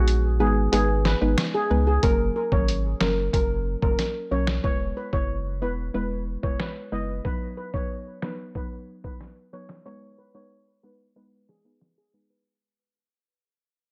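A digital ambience and a low-pass filter give this hypnotic, tough dancehall excerpt a closed-in sound, with a filter sweep and fade-out running from 2.0 seconds to the end. A shimmering, metallic steel pan leads up front with tape echo over a soft, dark, detuned pluck carrying chorus and sidechain pumping, while a deep sine sub bass holds the low end until 7.2 seconds. A muffled, pitched-down sampler-style kit adds finger snaps, hi-hat, rim click, snare and a thumpy kick that drops out briefly near the start, as the chords move from G#m through F#, E and B before returning to G#m.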